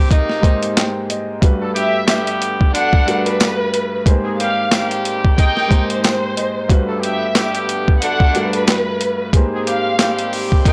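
A swung boom-bap groove at 91 BPM is driven by a gritty, pitched-down sampler kit, with a thumpy kick, high-tuned snare, handclaps and hi-hat up front, plus a very quiet, jingly tambourine entering at 2.1 seconds. A woody upright piano with audible action noise and a jazz-style horn section playing filtered stabs with tape echo move together between Abmaj9 and Gmaj9 chords, giving this confident, warm excerpt its harmonic colour. At 1.8 seconds a dark, distant violin section takes the melody with expressive vibrato and tape echo, all set in a small, dry room with cassette-like saturation.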